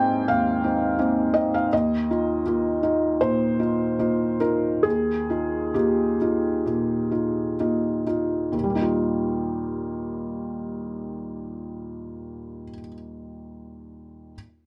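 In a rubato 4/4 that drifts between 62 and 85 BPM and slows from 0.3 to 8.5 seconds, this tender, peaceful piece of neoclassical minimalist piano in Eb major unfolds as an excerpt from a longer work. A felt-muted upright piano plays solo throughout, spanning Eb2 to Ab5, its mellow, intimate tone sitting up front with audible action noise, while a moderate studio reverb adds gentle space. The harmony rests on an Abadd9 chord before settling onto Ebadd9 at 8.5 seconds, as a new passage begins.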